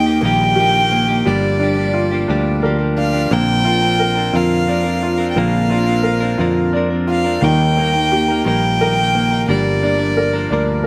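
A heartfelt, swaying six-eight pop ballad in Eb major at 58 BPM, cut from a longer piece, where a rich, airy-bowed violin sings the melody with light vibrato over a woody upright piano, both touched by slapback echo, while a clean, compressed electric guitar picks arpeggios and a growly fretless electric bass sits up front, all captured dry outdoors with little reverb as the chords move from Eb through Gm7 and Bbadd9.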